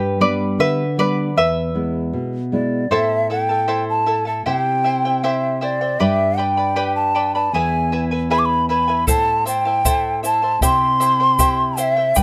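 A steady, straight 2/4 pulse at 78 BPM sets a slow, earthy pace for this melancholic Andean folk excerpt in A minor. A bright, shimmering charango, fingerpicked on double strings with some octave doubling, plays alongside a deep, thumb-plucked nylon-string guitar, both close and up front, moving through G and E before settling into a cycle of Am, C, G and E. At 2.5 seconds a large quena takes the melody, its airy wooden tone carrying vibrato and tongued, expressive phrasing at the front of the ensemble. At 9.1 seconds a round bombo and a grainy, dry egg shaker join. The recording is intimate and detailed, with little reverb, and the fragment is cut from a longer piece.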